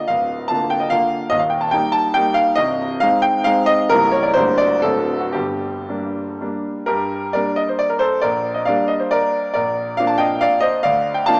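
Heard through worn, warbling old cassette tape with a small-speaker sound and wavering pitch, this nostalgic, wistful fragment of a romantic classical dance in 3/4 and G minor sets a solo concert grand piano in a moderate concert hall, its tone clear and up front with a deep, open bass. The dotted triple-time rhythms move with a flexible rubato between 108 and 152 BPM, passing through Eb, a C#dim7 and D7 before settling on G minor near 5.3 seconds. A new passage begins at 6.9 seconds and turns toward Bb, cut off from the longer piece at 11.4 seconds.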